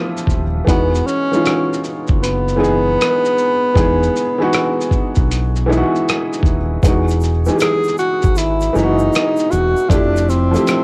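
A soft, felt-muted upright piano with audible action noise opens this mellow, nostalgic lo-fi hip hop excerpt at 78 BPM in E major, soon joined by a muffled, pitched-down sampler-style drum kit with a thumpy kick, a round, dark dub electric bass with tube saturation, and a breathy subtone tenor saxophone carrying the melody with scooped notes, while a grainy egg shaker slips into the background at 6.8 seconds, the whole home cassette recording sitting in light reverb and small room ambience.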